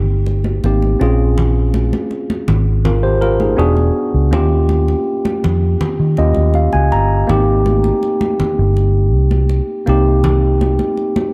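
Lush 1970s-style soul at 81 BPM in 4/4, smooth and bittersweet, cut from a longer piece, moving through rich chords such as Abmaj7, Bbm9 and Eb9. A worn, slightly out-of-tune tine electric piano sits up front with a clean, direct tone and plays a fill from 5.8 to 7.3 seconds, while a round, foam-muted fingered electric bass gives a dark, amped foundation until 10.8 seconds. Ringing, high-tuned congas played with hard hands enter at 0.3 seconds in a live room, and the whole is framed by light reverb and a dark, warm production.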